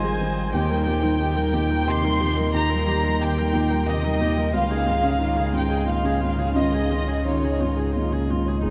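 Intimate and tender, this neoclassical piano-and-strings excerpt sways in a rubato 3/4 over Abmaj7, Eb and Dbadd9 chords. A close chamber violin section carries the melody up front with light vibrato and a soft sul tasto tone, while a rich, floating solo viola and a woody cello fill the inner and lower lines, and a mellow felt-muted upright piano with audible action noise sits in the background. Harp-like synth pluck arpeggios ring with chorus and slapback echo, a very quiet warbling tape-like pad adds nostalgic lo-fi haze, and a deep, punchy sub bass with a pitch-drop attack anchors the low end, all bathed in a huge ambient reverb that suggests a vast, echoing space.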